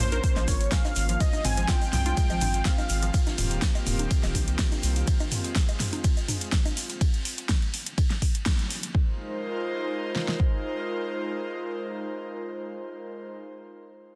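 Lightly reverberant and densely limited, this excerpt of uplifting, expansive progressive house moves at 124 BPM in Ab major, with a drop that runs until 8.9 seconds. A velvety, detuned synth lead with chorus, vibrato and dub echo carries the melody over an airy, breathy pad, while a lush, punchy unison pluck with cassette-tape colour and digital delay sits in the background playing arpeggios. Both the lead and the pluck stop at 3.1 seconds, while the slow-blooming pad holds sustained chords until 13.3 seconds. Underneath, a round, dark analog bass sits up front, and sidechain pumping gives a breathing motion to the bass, pad, lead, pluck and the dry electronic toms, congas and bongos. Two layered deep house drum kits drive the groove, one with a deep kick and fat snare, the other with metallic hats, ride and snare, both tape-coloured. A distant, roomy brush kit and a grainy, bright egg shaker add very quiet texture, and a band accent leads into the closing section. 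Across the excerpt the harmony moves from Bbm through Ab6, Eb6 and Fm back to Ab6.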